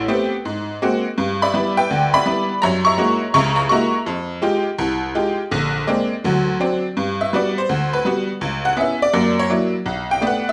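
A jangly, metallic tack piano sits up front in this relaxed, sophisticated solo jazz piece, swinging at 166 BPM in 4/4 across a span from Bb1 to Db6. Rich extended chords such as Ab9, Gb13 and Fm9 lead to D7, and at 7.0 s the music settles into G major with a Gmaj7 and turns to honky-tonk playing until the cut ends at 10.5 s. A wet stone room reverb surrounds the vintage-sounding piano, recorded live in one room.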